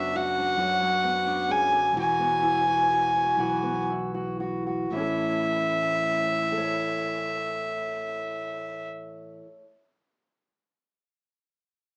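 A single close, reedy fiddle with an airy bow and gut-string tone carries the melody up front in this nostalgic, peaceful acoustic folk piece in 6/8 and A major at roughly 38-45 BPM, easing to a slower pace over the first 4.9 seconds. Fingerpicked steel-string acoustic guitar accompanies with a concert sound, and a round, punchy fingered electric bass sits low beneath them as the chords move from Bm/F# through Eadd9 to A. It is all heard from further back in a studio room with a wet reverb and a small-speaker quality, in a short passage cut from a longer piece.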